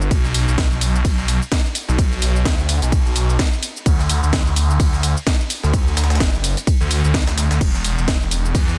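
Swaggering and gritty, this bass house cut runs at 128 BPM in 4/4 with a 16th-note swing, built around a thick, swirling detuned saw bass with phaser, overdrive and sidechain pumping that sits up front alongside a punchy electronic kick. A house drum kit adds a cracking snare, hats, cabasa, crash and ride, while a very quiet, pitched-up sampler-style breakbeat kit layers in hi-hat, snare and tambourine. The mix is dry and densely limited, with the whole 8.8-second passage holding one section.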